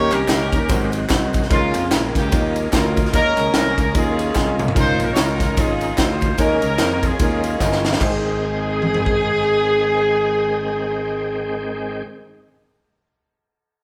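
A swung eighth-note feel at 148 BPM in 4/4 drives this uptempo gospel passage in Ab major, cut from a longer piece and carrying a reverent, soulful mood. A clear, up-front horn section with vibrato carries the melody, sounding distant and roomy as an ensemble, while a brilliant grand piano with long sustain comps in the background. A full, shouting tonewheel organ holds sustained chords behind them, lightly overdriven with chorus vibrato and a slow rotary speaker. A modern fingered electric bass sits punchy and direct underneath, and a crisp fusion drum kit, with a high-tuned snare, tight kick and bright cymbals, plays up front until 9.1 seconds, adding fills before each new section. Very quiet, close and dry handclaps, tambourine and egg shaker add texture until 8.2 seconds, as the chords move from Eb7 through Db69 and suspended Eb chords to settle on Abmaj7 at 8.0 seconds, all heard as a band playing live in one room with moderate large studio reverb.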